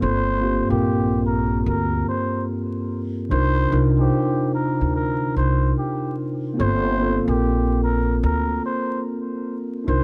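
A lazy 16th-note swing at 73 BPM carries this melancholic, reflective hip hop excerpt in G minor, where a woody pizzicato upright bass and a mellow tine electric piano sit up front through Gm11 and Cm11 chords while a veiled, breathy cup-muted trumpet with light vibrato and a raspy, growling jazz edge floats its melody through plate reverb and analog delay, all set in a small room with vinyl crackle.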